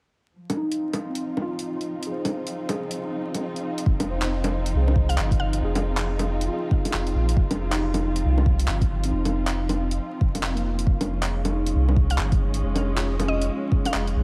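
A dark, bowed string section opens the piece at 0.4 seconds on an Fm7 chord, holding sustained chords with vibrato and portamento under a filter sweep and sidechain pumping. It is joined almost at once by a tape-toned deep house kit of bongos, handclaps and hi-hat, and by a worn, slightly out-of-tune electric piano that is lightly overdriven through a combo amp, also swept by a filter and trailed by dub echo. This melancholic, nocturnal future garage cut moves at 137 BPM in F minor with a swung sixteenth-note feel. At 3.9 seconds a deep, round sine sub bass and an up-front layered kick drop in together, and the bass carries sidechain pumping. A woody, detuned mallet-like FM pluck with chorus and dub echo flickers high in the background for a moment from 5.1 seconds and returns near the end, after the harmony has moved to Db/F. The echo-heavy mix sits in light digital ambience with a bed of vinyl crackle.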